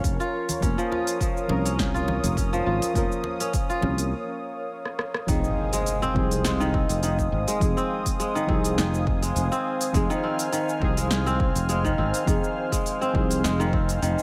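Organic downtempo in F minor at 103 BPM with a light 16th-note swing, cut from a longer piece and carrying a mystical, warm mood, led by an up-front, ringing, fingerpicked kora playing arpeggios through tape echo over a growly, punchy fretless electric bass. A smooth, detuned analog pad holds sustained chords while a dark, warbling chord stab with chorus and tape echo sits in the background, both pumping against the punchy electronic kick and a deep house kit of smooth hats, snare, rim click and cabasa, with bright, dry congas tucked behind from 0.5 to 4.0 seconds. After a short break and drum fill, an electronic impact marks the shift at 5.3 seconds from Bbm/F to Fm7, all set in light reverb and digital ambience.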